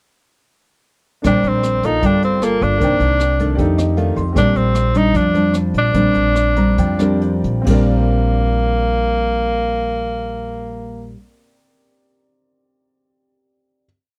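A soft bossa nova brush groove with dark cymbals, rim clicks and a boomy kick carries this short, breezy and sophisticated piece, where a woody pizzicato upright bass plays dotted root-and-fifth lines, a fingerpicked nylon-string guitar adds thumb bass and syncopated plucked chords, a clear grand piano holds drop-2 voicings and adds fills, and a punchy, up-front tenor saxophone states a motif-based jazz melody, all in a dry, close 1970s-style studio sound, before the band slows from 4.4 seconds into a final chord at 7.7 seconds that the piano sustains until 13.9 seconds.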